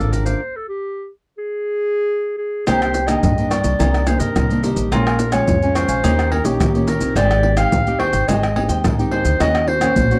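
A dry, close 1970s-style studio sound with light reverb frames this bittersweet, yearning samba and choro fragment in C minor at 107 BPM, where a distant, roomy clarinet sings the melody over crisp picked cavaquinho, small fingerpicked nylon-string guitar, woody, growly pizzicato upright bass and vintage, band-limited percussion of maracas, pandeiro, agogo bells, tamborim and deep surdo, all halting in a stop from 0.4 to 2.7 seconds before a round, mellow mandolin joins as a second line over chords moving from Cm9 through Bbm7, Eb7 and Abmaj7 to Ebm7.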